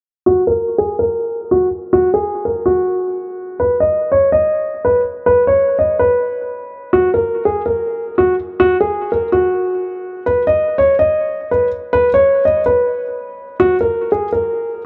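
A mellow, intimate baby grand piano plays alone from 0.3 to 14.8 s in this short cut from a longer hip hop piece, its short-sustained notes sitting up front between F#4 and D#5 with audible action noise and a low-pass filter that sweeps across it until 13.6 s, when a brief new section begins. The mood is triumphant yet wistful, at 144 BPM in 4/4 with a half-time feel, in F# major tuned to A4 = 436 Hz. A moderate plate reverb with a 3.7 s tail wraps the dark, warm production.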